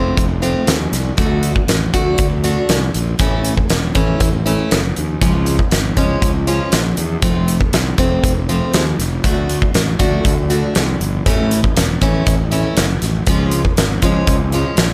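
A picked steel-string acoustic guitar opens with full-bodied arpeggios touched by slapback echo, joined at once by a growly, overdriven fuzz bass, in this bittersweet, restless quiet-loud alternative rock cut from a longer piece at 119 BPM. From 0.2 seconds a huge arena drum kit with a fat snare and punchy kick sits up front in a big room, while the chords cycle through F, D, A and Db under light reverb.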